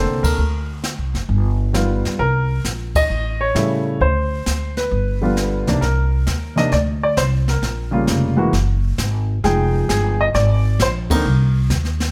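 A lightly reverberant studio recording captures a moody, swinging jazz piano trio at 133 BPM in C minor, cut from a longer piece. A warm, natural baby grand carries the melody up front over a woody pizzicato upright bass, while a brushed drum kit adds airy texture, dark cymbals and a boomy kick. The band accents together at 0.2, 2.9 and 11.0 seconds across two passes of the same section, as the harmony moves through augmented, suspended and minor ninth colors before settling on C minor.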